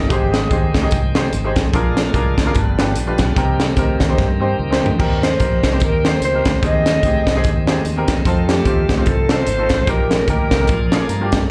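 A raspy alto saxophone with slapback echo leads this soulful, jubilant uptempo gospel excerpt in Eb major at 148 BPM and a swung 4/4. It plays over a shouting tonewheel organ with slow rotary speaker and overdrive in the background, a round, dark fingered electric bass, a brilliant, woody upright piano and a punchy, up-front fusion drum kit with bright cymbals and a high-tuned snare. After the saxophone's brief opening phrase, a drum fill at 4.2 seconds leads to its return at 5.2 seconds, and the piano closes with a fill at 10.9 seconds, all heard as a live club gig through the PA with light reverb.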